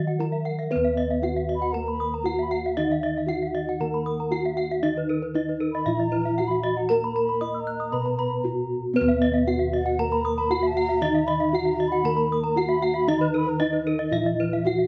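This is a hypnotic, shimmering Balinese gamelan passage in Eb pelog at 116 BPM in a straight 4/4, cut from a longer piece. Four bronze metallophones ring together throughout: one carries the melody, one plays a low accompaniment, and two weave high arpeggios that carry a slapback echo. Their paired tuning produces shimmering beats, and the mallets range from padded discs to horn and wood, so the tone runs from soft and mellow through bright and airy to a close, dry, full sound. Underneath, round, mellow bossed gongs hold the bass, set up front with a beating, mid-forward tone. At 1.6 s a breathy, low bamboo xiao enters with a distant, tongued second line, played with vibrato and carrying a slapback echo. The outdoor recording has little reverb, giving the ensemble an open, immediate presence.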